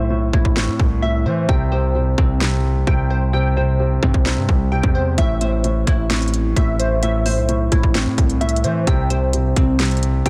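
A dark, mellow concert grand piano opens this melancholic, hard-hitting trap excerpt in A minor, holding low accompaniment beneath a glassy, crystalline wavetable pluck that spins detuned arpeggios through chorus, tape echo and a low-pass filter, with ring modulation and a moving notch giving it a restless digital shimmer. A distorted 808-style bass sits up front from the start, heavy and saturated with a fast attack and decaying tail. The trap drum kit enters at 0.3 seconds with a hard-clipped kick, sharp snare and crisp hats carrying a tape-tinged edge. The opening stretch to 5.2 seconds plays as a break, and the harmony moves between Am and C5 at a half-time feel over 130 BPM. The whole passage is set in a digital ambience with a dense, heavily limited modern master.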